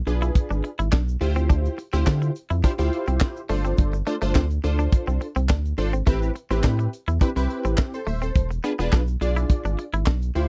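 Slick and danceable, this early-eighties boogie funk excerpt at 105 BPM pairs a rubbery, hollow square bass with a tight, up-front acoustic drum kit of handclaps, hi-hat, kick and high-tuned snare, while a punchy, detuned polysynth comp with chorus, a twangy, direct-recorded clean electric guitar riff with analog chorus, and a grainy egg shaker in the background ride over E7b9, Dm11, G9sus4 and Am9 chords in a dry, close studio sound.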